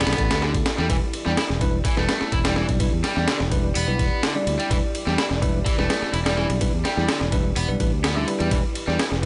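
A gritty, funky breakbeat excerpt opens on a sustained Em7 with an up-front, compressed sampler-style drum kit of thumpy kick, high-tuned snare, hi-hat and ride cymbal, a warm fingered electric bass, a bright, overdriven semi-hollow guitar riff trailed by dub echo, and a dark, detuned analog pad pumping under sidechain and chorus in the background, before a bell-like, clean tine electric piano adds stabs with its own dub echo from 0.9 seconds, all in a lightly reverberant room.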